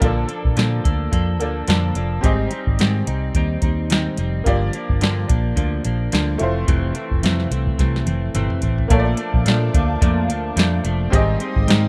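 A soft vintage rhythm box with a deep kick, crisp snare and metallic hats sits up front in this dreamy, hazy bedroom-pop excerpt at 108 BPM with a light swing, joined by a dark, round, foam-muted fingered bass, a clean picked electric guitar softened by analog chorus and vibrato, and a brilliant, woody, slightly detuned upright piano with audible action noise and cassette-tape wear, all moving through Bbmaj7, Abmaj7, Gm7 and Fmaj7 in a dry, rough home-demo mix until a drum fill at 7.8 seconds leads to a swirling, phased sawtooth pad entering at 8.9 seconds.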